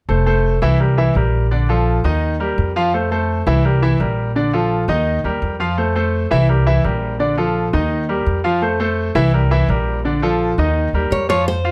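A brilliant, up-front baby grand piano rolls out arpeggios from the start of this sunny Latin excerpt, its open, long-sustaining tone cycling through a repeating Fmaj7, C7, Bbmaj7 and Eb progression. Beneath it, an upright bass with gut strings plays pizzicato, giving a woody, dark and thumpy foundation. At 11.1 s a bright, fingerpicked classical nylon-string guitar steps forward with a brief melody, all captured by close, detailed microphones in light reverb.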